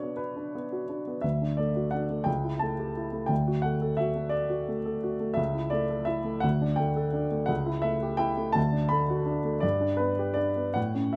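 Lightly reverberant and intimate, this 11.2-second fragment of a longer romantic character piece puts a clear, up-front solo grand piano before the listener, its action noise audible, as it plays a stormy, passionate passage in a rubato 6/8 at about 57 dotted-quarter beats per minute, tuned to A4 = 443 Hz, moving from B minor through D and A7/C# chords, settling into D major from 5.4 s, and ending on G.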